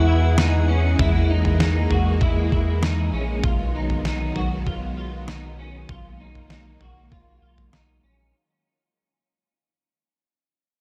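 A floating, blissful dream-pop fragment opens with chorused vintage sawtooth violas from a string machine holding slow-attack chords, clean picked electric guitar arpeggios trailed by tape echo, a round, deep analog bass sitting up front, and a glassy texture of drifting overtones in the background that drops out at 2.4 seconds, while a detuned, overdriven 8-bit drum machine with a thumpy kick, medium-tuned snare and toms enters at 0.4 seconds, all moving from Emaj7 to B6 inside a dark production with light digital ambience as the whole passage fades out.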